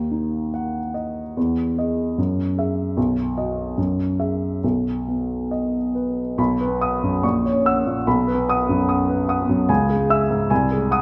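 In a flexible two-beat metre, the phrasing bends freely with rubato, giving this short romantic character piece for solo piano a hopeful, passionate sway. A grand piano with a smooth, vintage tone sits up front and carries everything alone from 0.0 to 11.0 seconds, reaching from deep in the bass to bright upper notes. The harmony opens on a minor chord before moving through a major seventh and suspended colours that settle repeatedly onto the home chord, giving the opening phrase a searching yet assured feel. Around 6.4 seconds a second section begins, leaning on seventh chords with the bass on inverted notes and turning toward a minor chord and a dominant that leaves the music poised to continue. A moderate recital hall reverb surrounds the instrument with a natural sense of space, and the passage is cut from a longer work.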